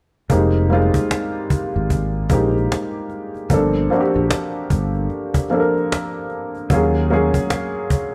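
Soulful and sultry, this short neo-soul and R&B clip has a swung sixteenth-note feel and a live, one-room sound with light reverb. An intimate, woody upright piano with audible action noise and a slightly detuned character carries the accompaniment up front, while a growly, amped fretless electric bass sustains underneath and a snappy, close and dry cajon with snares drives the groove. The harmony moves from Fm11 to Gm11 at 3.5 seconds and to Ebm11 at 6.7 seconds before the fragment ends at 8.1 seconds.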